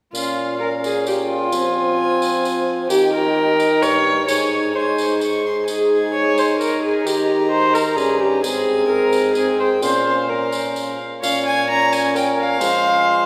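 Rustic and courtly, this renaissance-style consort dance moves in a steady 3/4 at 130 BPM in B-flat Dorian, an excerpt from a longer piece. A rich, gut-string violin carries the melody in a close, period-style bowed tone, while an up-front viola with a reedy, smooth-topped sound plays the second line just beneath it. A mellow bassoon with light vibrato holds the bass and a clear trombone adds accompaniment from 0.2 seconds, both set back and roomy, as a jingly tambourine sounds from a distance until 12.8 seconds, all bathed in a long, wet church reverb.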